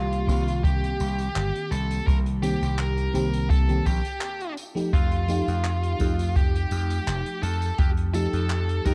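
Melancholic and nostalgic, this brief vaporwave excerpt, cut from a longer piece, drifts along at 84 BPM in 4/4 with a light swing on the sixteenths, set in C dorian and moving from Cm7 to F9 at 4.6 seconds. A bright, high-gain lead guitar carries the melody in a narrow upper-middle range, its picked, distorted tone trailed by analog delay. Underneath, an FM electric piano layered with a soft pad supplies lush, dreamy chords, detuned and shimmering with analog chorus and a cassette-tape haze, its fast-attack, decaying notes sitting over a noise layer. A punchy, amped vintage slap bass sits up front in the low register, while a boomy acoustic kick enters at 0.3 seconds. An airy, polished jazz kit adds handclaps, hi-hat and tambourine far back in the mix, all within a small room ambience and a dark, warm production.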